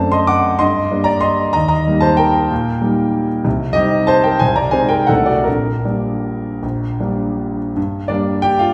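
A classical piano waltz in G minor, elegant and nostalgic, moving in a rubato 3/4 at 151-200 BPM, with a solo concert grand that sounds warm and intimate, its deep bass, long sustain and audible action noise heard up front within a wet recital-hall reverb, ranging from Bb1 to D6 as the harmony passes through Gm, Eb, Cm and D7/C before settling on Gm at 7.8 s in this brief fragment of a longer piece.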